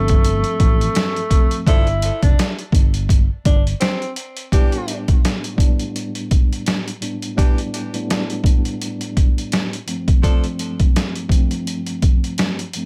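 Swung sixteenths drive this dark, moody boom-bap hip-hop fragment, cut from a longer piece, in which a gritty, pitched-down sampler-style drum kit with a thumpy kick sits up front, a round fingered electric bass and a breathy, whispered tenor saxophone melody with vibrato and subtone fall away within the first few seconds, a mellow tine electric piano with cassette-tape colour carries the chords to the end, and a clear saxophone section adds soft-attack jazz stabs from 1.7 to 10.5 seconds over a dry, close room sound.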